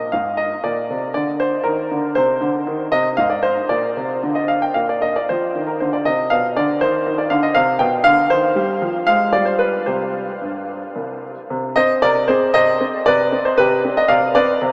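Serious and dramatic, this short passage cut from a longer classical-period piano sonatina unfolds in three-four time with a flexible, rubato feel. A single baby grand piano carries the whole piece from start to finish, its tone clear and natural, with short sustain, sitting up front in the sound. The playing spans a broad register, from deep bass notes up into the upper middle of the keyboard. Harmonies move through minor and diminished colours, passing chords like Bb, Bdim, G7/B and Fm before settling on C minor and a closing G over C. Around 11.5 seconds the music turns to a new section. The piano rings out into a vast, echoing space drenched in huge ambient reverb, yet the overall sound takes on the character of a small speaker.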